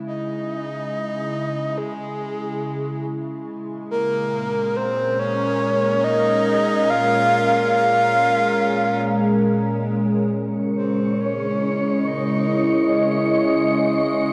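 Ambient in free time, serene and reflective, this excerpt from a longer piece opens with an evolving, detuned wavetable pad holding sustained chords from Dbmadd9 to Bbm7 while a breathy, flute-like synth lead with vibrato and chorus sings a soft melody through a diffuse ambient delay, both fading in over the first 10.3 seconds. At 10.3 seconds the harmony returns to Dbmadd9 and a filter sweep moves across the pad, and an airy, wind-like tuned noise texture drifts in at 10.6 seconds beneath the two up-front parts. A scoring-stage reverb and a cassette-tape tint give the whole a hazy, spacious sound.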